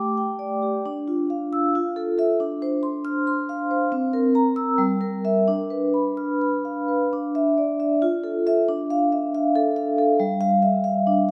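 A solo vibraphone, struck with medium mallets and sitting up front, opens on an A7sus4 chord with a metallic, ringing tone colored by slow motor vibrato, unfolding a reflective, hypnotic line in a rubato 7/8 across a span from G3 to F6. Its harmony drifts through Dmadd9, Fmaj7, Dm7, C7 and Gm6 before the opening idea comes back at 7.1 s on Dsus2, settling toward a bare G5 at 10.2 s. A lush recital-hall reverb lets each note bloom in the air around this contemporary classical excerpt, which is cut from a longer piece.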